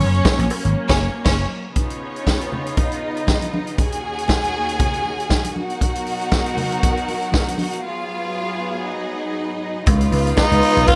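A lightly reverberant studio mix opens this glamorous, danceable disco passage at 118 BPM with a gentle sixteenth-note swing, where an acoustic vintage drum kit with a punchy kick and rolled-off top drives beneath lush bowed strings: an up-front, focused section carries a second line while a more distant one holds sustained chords over a progression from F# through C#9, D#m7, Bmaj7 and G#m7. A growly, amped slap bass and a very quiet, metallic cowbell appear only at the start and again from 9.9 s. Bright, thin-skinned congas sit in the background from 0.3 s, through the band's accent and a break. A raspy, gritty tenor saxophone enters up front at 10.4 s, shortly after the bass and cowbell return on C#9.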